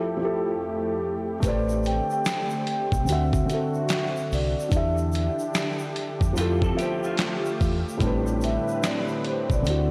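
Lo-fi hip hop at 73 BPM in A minor with a swung, nostalgic and reflective feel, opening on a soft-mallet vibraphone melody with a ringing, mellow tone and diffuse ambient delay, set over an intimate felt-muted upright piano with audible action noise and a smooth, warbling analog pad with chorus. At 1.4 seconds a gritty, compressed sampler-style drum kit with a thumpy kick, handclaps and hi-hat enters up front, alongside a dark, round fingered electric bass and a grainy tube shaker in the background. Between 6.4 and 8.0 seconds a slightly broken-up electric guitar through a small old amp adds a brief second line, all within a dreamy, reverb-soaked mix with a cassette-tape character.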